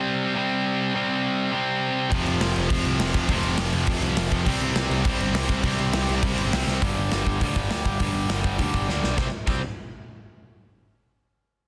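Rebellious and rowdy, this punk rock cut drives along at a brisk, straight 4/4 pace. A bright, overdriven electric guitar opens alone with a picked riff up front, and at 2.1 s the rest of the band crashes in: a warm, biting second guitar sitting in the background, a scooped, double-tracked distorted guitar playing higher, a punchy, direct electric bass, and a big acoustic rock kit with a punchy kick, medium-tuned snare and bright cymbals ringing in a big room. The harmony moves from C5 to F and C before shifting to G5, where the double-tracked guitar drops out at 6.8 s and a drum fill marks the turn. Another fill near 8.9 s pushes back to C5 as the piece is cut off mid-stream. The mix is dry, dense and heavily limited, giving the whole attack a modern punch.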